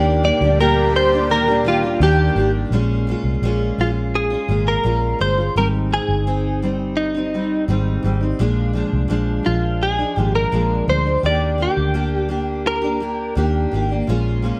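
A clean, compressed electric guitar, recorded direct and colored by analog chorus and slapback echo, carries the melody up front in this laid-back, hazy indie and bedroom pop passage cut from a longer piece. A picked steel-string acoustic guitar with audible finger squeak, lush chorus and vibrato plays the accompaniment beside a dark, round, foam-muted fingered electric bass. A thick, detuned sawtooth pad with phaser sits in the background only until 2.7 s, and light digital ambience gently blurs the sound as the chords move through Ebmaj7, Bbm7, Abmaj7 and Bb7.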